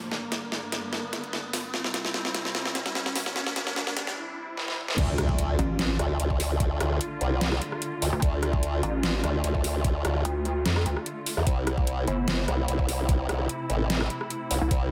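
Heavy wobble dubstep in a half-time feel, aggressive and menacing, taken from a longer piece. It opens with a build-up where a muted string section holds dark, veiled chords with vibrato and a smooth top, pumping under sidechain, while a background riser climbs and the dubstep kit plays fills of deep snare, metallic hats, rim clicks and crash, its snare, hats and cymbals high-passed. A brief break at 4.2 seconds gives way to the drop at 5.0 seconds, marked by an impact as a knocking electronic kick and a formant-sweep wobble bass arrive together. The wobble bass is built from pulse and sine tones through a formant filter, compressed, overdriven and thickened with chorus, and it sits up front. At 5.6 seconds a second, pulsing pluck wobble bass joins, heavy, detuned and saturated, adding further low-end weight. The chords move from G minor and C in the build to D minor across the drop, shifting to C6 near the close, all within a small room and light reverb.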